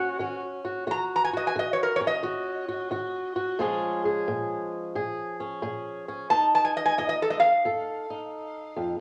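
Acoustic country blues excerpt with a smoky, soulful swing, where a metallic, nasal resonator slide guitar played with a steel bar carries the melody up front over a dark, boxy fingerpicked acoustic guitar moving through Ebm7, Bbm7 and F7, both heard on cassette tape with spring reverb and small room ambience.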